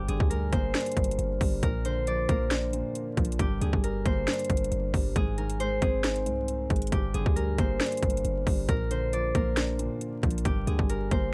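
A fingerpicked Celtic harp carries the melody up front, its acoustic, ringing tone softened by a low-pass filter and trailed by tape echo. This brooding, melancholic trap beat moves at 136 BPM in a half-time 4/4 feel, set in G phrygian and cut from a longer piece. Beneath the harp, a dark grand piano with a mellow, boxy, filtered sound supplies the accompaniment, while a deep, boomy 808-style bass with a sine core, a noise layer, a fast attack and a decaying tail anchors the low end. The electronic trap kit enters at 0.1 seconds and sits up front, pairing a hard-clipped kick and sharp snare with metallic hi-hats. The harmony circles between G minor, B-flat and A-flat under light reverb and a bed of vinyl crackle.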